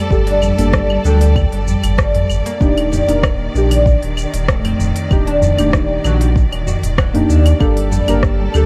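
A small room ambience and lossy compression artefacts frame this meditative, mystical organic downtempo excerpt, where a dark, detuned chord stab with chorus, delay and sidechain pumping moves from Gmadd9 to Ebmaj7 over a round, up-front sine sub bass and a lush, distant bowed string section with vibrato. A bright, woody plectrum-plucked oud spins delayed arpeggios, while a tape-warm layered electronic kick and a produced kit of crisp hi-hat, claves, rim click and shaker sit in studio reverb. A low-tuned, close and dry tabla with a short ring adds acoustic texture in the background, entering at 0.4 seconds.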